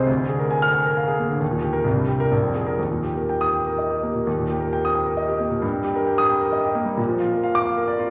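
A solo grand piano sits up front with an intimate, natural tone and audible action noise, playing a brilliant, sparkling classical virtuoso study in E-flat major, tuned to A4 = 442 Hz. Cut from a longer piece, this passage moves in 3/4 at 122-138 BPM with a rubato feel, spans Bb1 to F6, and states its opening idea twice, the second time from 4.3 seconds. A wet scoring-stage reverb gives it a 1.9-second tail, and vinyl crackle runs beneath the sound.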